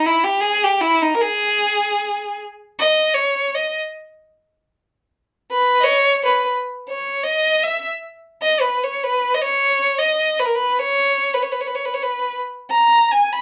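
A lone bowed violin, clear and focused with vibrato, carries a virtuosic, restless Balkan folk solo in free time from 0.0 to 13.4 seconds, tuned to A4 = 442 Hz, set in a moderate small-room reverb, and cut from a longer piece.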